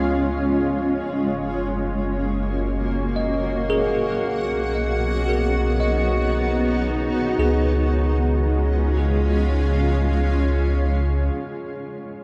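Ambient piece in a slow three-time feel, serene and luminous, cut from a longer work. Up front, a cloudy, evolving granular pad holds sustained chords over a deep, round sub bass, while a bell-like tine electric piano spins brilliant arpeggios through analog delay and rings on alone until 12.2 seconds after the others stop at 11.3. A very quiet organ-like drone with ensemble chorus hums beneath, a filter sweep moves across the pad for the first 7.4 seconds, and the whole dreamy, cassette-tinged mix is soaked in a cathedral reverb.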